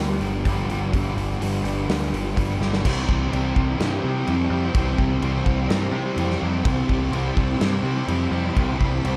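A straight 4/4 pulse drives this short cut from a longer shoegaze and dream pop rock piece, its mood dreamy and blissful. A fuzz guitar sits up front with a distorted, chorused riff, while an overdriven electric guitar plays its own riff further back, colored by reverse reverb, and a growling, bright picked bass with overdrive stays prominent beneath them. The acoustic arena kit comes in at 0.2 seconds with a punchy kick, a medium-tuned snare, hi-hat and crash, sounding natural in a big room, and it plays a fill at 2.6 seconds. At 2.8 seconds the harmony moves from G7 to Cmaj7, and a vintage string machine with violins enters in the background, holding shimmering, full-bodied sawtooth chords with a soft attack and ensemble chorus. The production is dark and dry, with a faint mains hum underneath.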